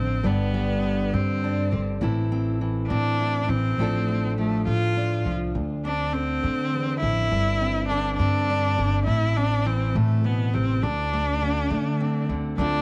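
Acoustic folk for a small group in 6/8 at 68 BPM, this haunting, wistful excerpt from a longer piece sits in D dorian and moves through chords such as Gsus4, Am, F6/A and Dm7 before settling on D5. A clear, smooth bowed cello carries the melody up front with even vibrato, while a fingerpicked dreadnought acoustic guitar supplies warm accompaniment, its finger squeaks audible. Underneath, a plucked upright bass adds a woody, thumpy low end, all three playing throughout in a studio ambience.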